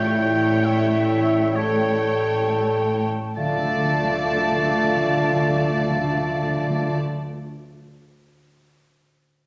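A slow, romantic classical movement for symphony orchestra, cut from a longer piece, with a yearning, melancholic mood and a freely breathing rubato that slows through the opening 3.4 seconds as an A7 chord resolves to D minor. A close, expressive violin section carries the melody with vibrato, while a second line is shared by a prominent oboe with light vibrato, a smooth, rich chamber violin section, and a background clarinet and airy, hollow silver flute. Beneath them, a dark, distant French horn section holds sustained chords, and a present bassoon and a background viola section fill in the accompaniment. Cellos, very quiet and lush, join a soft-attacked double bass section on the bass line, and timpani struck with medium mallets sound close and dry. A very quiet fingerpicked concert harp rings out in arpeggios until 7.3 seconds, and the whole ensemble sits in a wet recital hall reverb.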